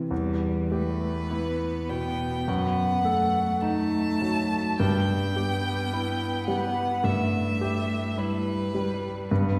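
Heard from further back in a concert hall, this recording sits in a wet, lingering reverb with a decay of about 1.8 seconds, while the piano and violin still sound up front. It is a short excerpt from a slow, romantic movement for piano trio in E minor, moving at 53 BPM in 4/4 with a flexible, rubato feel and a solemn, yearning mood. A clear, polished concert grand carries the accompaniment from the first moment, its deep bass and intimate presence coming through along with audible action noise. A single bowed cello enters at 0.1 s with a smooth, even second line, rich and close, shaded with vibrato. At 0.7 s a single bowed violin takes the melody, warm and expressive, with vibrato and portamento. The harmony moves from E minor to B7 over F sharp and then to E minor over G, holding the music in one unbroken, solemn section.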